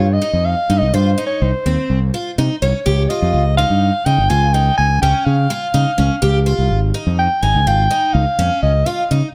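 Counted in an uneven seven, with a straight feel, this short passage of progressive instrumental band music moves with a driving, bright energy. An overdriven fingered electric bass sits up front with a punchy, direct tone, anchoring the low end throughout. A picked twelve-string acoustic guitar plays shimmering, octave-doubled arpeggios in the middle register, giving the texture a bright sparkle. Over them, a breathy soprano saxophone takes the solo melody, its dark, whispered subtone, soft attack and light vibrato lending an intimate, jazz-style voice, carried by a touch of delay. The harmony moves from Eb to Eb9 around 2.9 seconds and on to Db at 6.2 seconds, all within a light reverb that keeps the sound close and clear.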